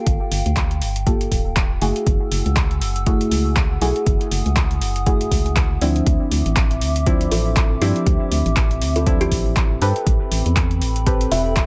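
A warbling, nostalgic pad of detuned, lo-fi chords and a soft, mellow chord stab open this smooth, deep house excerpt, both breathing with sidechain pumping, the pad shimmering with chorus and built-in reverb while the stabs trail off into dub echo. Almost at once a hollow, organ-like FM bass with a dark, tube-saturated edge settles underneath, joined by a layered electronic kick and a punchy analog drum machine whose tape-tinged handclaps and hi-hat carry a small-room character and a gentle 16th-note swing. The harmony drifts through lush ninth chords, moving from Gm9 to F#m9, then Dm9 and finally Am9. At 7.3 seconds a woody, ringing kalimba enters with a vintage, band-limited melody, its plucked notes echoing in dub fashion until 11.5 seconds. The whole groove sits in a digital ambience that lends it a deep, unhurried glow.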